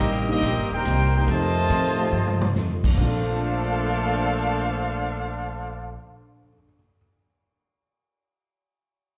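Big band swing in Bb major at 141 BPM, this brief, energetic excerpt from a longer piece puts a clear, up-front trumpet section with vintage vibrato over a tight, soft-edged trombone section, a woody pizzicato upright bass, a very quiet picked steel-string acoustic guitar with finger squeak, a grand piano sitting intimately in the background from 0.3 seconds, and a punchy big-room drum kit that plays a fill at 2.1 seconds before dropping out at 3.1 seconds, all moving from Cm7 through F7 to a Bbmaj9 in a reverberant concert hall.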